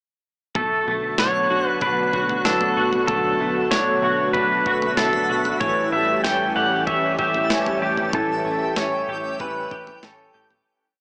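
A slow tom and kick pulse from a clean 12-bit digital drum machine, thumpy and tape-warm with a medium-tuned snare, sets a straight 95 BPM in 4/4 for this melancholic, haunting dream pop piece in B minor, moving from Bm7 to A7 at 5.6 seconds. Underneath, a plucky analog bass with a punchy filter pluck keeps a steady eighth-note line in the background, while a bright, twangy clean electric guitar plays a fingerpicked roll pattern through ensemble chorus, digital delay and shimmer reverb. A smooth, detuned analog pad holds sustained chords with a slow attack, softened by chorus and shimmer reverb. Up front, a compressed pedal steel guitar played with fingerpicks carries a motif-based melody of song phrases with volume swells and slide, trailed by digital delay and shimmer reverb. From 1.2 seconds a twinkling granular texture scatters sparkling notes with an octave-up shimmer in the background, and the whole piece sits in a huge ambient reverb with a small speaker sound before fading out from 8.1 seconds.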